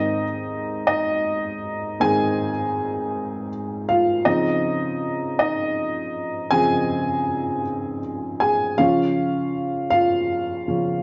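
Pop in Ab major with a swaying, tender mood, this short cut from a longer piece moves in a slow 6/8 at 53 BPM (dotted quarters) as a lone upright piano, dark, woody, slightly detuned and intimately close with audible action noise, spans Ab2 to Ab5 through Ab, Dbmaj7 and a rootless Bbm/Db, bathed in a damp echo-chamber reverb with a dull, rolled-off top end.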